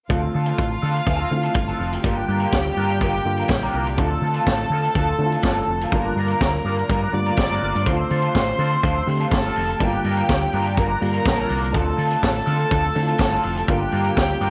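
A warm studio string section sits up front in this driving, sultry disco excerpt, its bowed, gut-string ensemble tone carrying a smooth second line high above the groove. Underneath, a vintage drum kit with a punchy kick and high-tuned snare, plus a round, dark fingered electric bass, push a straight 124 BPM pulse in D minor. A bright, reedy electric piano with medium tremolo adds clean accompaniment, while an electric guitar through a small old amp contributes slightly broken-up, picked, lo-fi wah accompaniment. The harmony rocks steadily between Dm7 and Gm7 for the full 14.5 seconds, with every part playing throughout. Moderate spring reverb and a rolled-off top end give the recording a period studio character.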